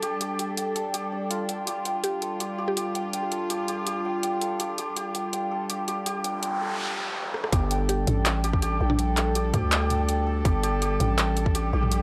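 A half-time pulse at 164 BPM in 4/4 drives this dark, tense passage of drum and bass, cut from a longer piece. An overdriven, up-front drum kit of handclaps, bright hi-hats, rim clicks and toms plays throughout. Above it, a santur rings out shimmering, hammered arpeggios through tape echo, over a close cello section holding soft, bowed sul tasto chords that carry 12-bit sampler grit and sidechain pumping. A woody, round FM pluck with chorus and tape echo surfaces briefly in the background with short melodic phrases. An electronic noise sweep enters at 6.3 s and a drum fill lands at 7.3 s before the drop at 7.5 s, where a growling, buzzy 808-style bass and a tight, overdriven electronic kick join up front on a G minor chord. The dry, gritty hardware recording carries light reverb.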